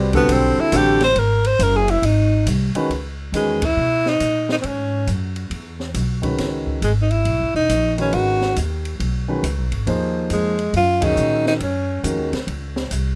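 A swung 4/4 at 138 BPM drives this cool, spiritual modal jazz cut in C# dorian, taken from a longer piece. The woody, growly upright bass sits up front with thumpy plucked notes from the start, while the open drum kit brings dark cymbals, a high-tuned snare and a boomy kick, sitting lower in the mix on hi-hat, ride, snare and kick. The tenor saxophone carries the melody from 0.2 seconds, playing solo over the opening D7sus4 and G#7 with a soft attack, vibrato and scooped notes, close-miked and up front. The concert grand piano comps intimately in the middle register with deep bass, long sustain and audible action noise, dropping out briefly at the band accent at 3.6 seconds and returning at 6.2 seconds while the harmony rests on C#m11. A second band accent lands at 11.0 seconds after the shift to D#m11, and the dry studio sound keeps every part close and natural.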